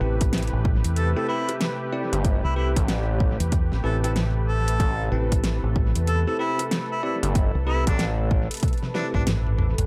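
An echo-heavy mix with light reverb and a digital ambience frames this swaggering, playful glitch hop groove, which swings its sixteenths over a single Am9 chord. An up-front, round fingered electric bass anchors the low end throughout, joined at 2.1 s by a gritty, saturated sawtooth synth bass with a resonant filter pluck. A punchy, overdriven electronic kick and a layered pop kit with a fat snare, metallic hats, rim clicks and toms, both re-recorded in a small room, drive the beat, and the kit closes with a drum fill from 8.6 s. A detuned analog pad holds smooth sustained chords with chorus and sidechain pumping, while a bell-like tine electric piano plays bright stabs through a low-pass filter, analog delay and vintage 12-bit sampler grit. Over this, a warm harmonica with light vibrato carries the solo melody from 1.0 s, trailed by analog delay, in a passage cut from a longer piece.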